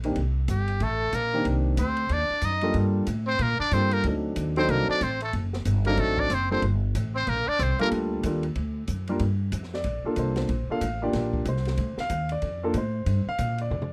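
Small-group swing and bop jazz with a smoky, swinging mood, taken from a longer piece and set in a dry, close 1970s-style studio sound. A muted trumpet carries the melody from 0.5 seconds, bright and buzzy with light vibrato, breathy tone and scooped notes, with a slapback echo on it. A tenor saxophone plays a second line entering just after it at 0.8 seconds, its subtone and vibrato sounding distant and roomy, and both horns stop at 7.9 seconds. The upright piano accompanies throughout with a warm, intimate, polished tone, long sustain and audible action noise. The plucked upright bass sits up front, woody, growly and thumpy, while the drums stay lower in the mix, with dark cymbals, a high-tuned snare and a boomy kick in a small room, capped by a drum fill at 13.7 seconds.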